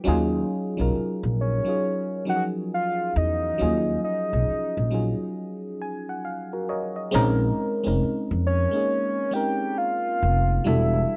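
Soulful and introspective, this slow neo-soul R&B excerpt moves at 68 BPM in Eb minor with a swung sixteenth-note feel, drifting from Ebm11 to Bbm11 and touching Em11 near its end. A glassy, bell-like FM electric piano with chorus carries the chords and plays a fill from 5.4 to 7.1 seconds, while a woody, growly pizzicato upright bass sits up front underneath. From 1.4 seconds a soft, round octave-layered synth lead with a sub octave, vibrato and chorus sings a dark, sustained melody, all captured in a dry, close 1970s-style studio sound.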